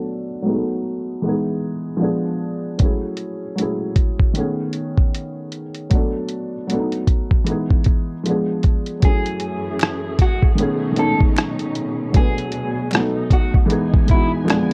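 A lazy 77 BPM groove in 4/4, swung at 60% on the sixteenths, sets a cosy, nostalgic lo-fi hip hop mood in this short cut from a longer piece. A soft, felt-muted upright piano opens alone with mellow, intimate chords and short sustain, treated with a filter sweep through the first section as it moves from B7 and Emaj7 through Fdim7 to F#m9, B13 and D6. At 2.8 seconds a compressed, pitched-down sampler-style kit arrives up front, with a thumpy kick, hi-hat and rim click given a muffled, overdriven grit. From 9.0 seconds, a slightly broken-up electric guitar through a small old amp picks a quiet, lo-fi melody shaded by harmonic tremolo, while a distant, lush string section holds bowed chords with vibrato and portamento. Close, dry finger snaps join at 9.8 seconds, and light reverb rounds out the dark production.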